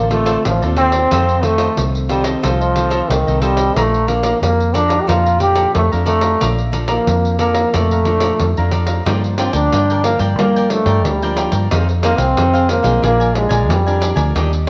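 A straight 4/4 samba and choro groove at 91 BPM in Bb major drives this festive, playful excerpt, where a jingly, compressed pandeiro and a dark, round, foam-muted vintage electric bass sit beneath a bright, crisp picked cavaquinho and a full-bodied, fingerpicked nylon-string guitar with audible finger squeak in the background, while a clear, vibrato-laden jazz trombone solo leads up front yet sounds distant and roomy, the mix bathed in moderate echo-chamber reverb with a mellow top end as the harmony moves from Dm7 through F7 to Bbmaj7 before shifting to Gm7 at 9.1 seconds.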